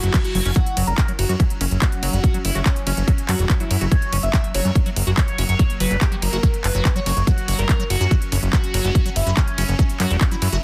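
An electronic reverse cymbal opens this excerpt from a longer psychedelic trance piece and is gone by 0.6 s, as a gritty, screaming overdriven synth lead, a swarming drone, a fat analog bass and a techno drum kit sound together from the start. The alien, hypnotic groove runs at 143 BPM in a straight 4/4 in F# major, driven by a heavy, up-front electronic kick drum that arrives at 0.1 s alongside a squelchy, resonant liquid acid bass riff with a filter sweep, chorus, cassette tape colour and tape echo, sitting in the background. The thick, detuned sawtooth bass holds the low end up front, while the drum kit adds handclaps, ride cymbal and smooth hi-hats. Above it, the guitar-like lead carries the melody with distortion, chorus, phaser, vibrato and tape echo, and its bright tone pumps with sidechain compression, as do the acid riff and the drone. The drone's tense, evolving, wave-folded and granular sustained chords, bathed in their own reverb, hover in the background of a dry, dense and heavily limited modern master.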